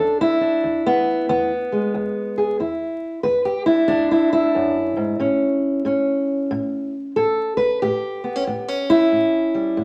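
Swung eighth notes in 4/4 drive this rollicking, gritty snippet of acoustic country blues, cut from a longer piece. A fingerpicked, ladder-braced old acoustic guitar sits up front and plays alone throughout, its dark, woody, boxy tone and aged strings moving from E7 to A7 at 5.2 seconds. A wet studio reverb and a layer of vinyl crackle surround the sound.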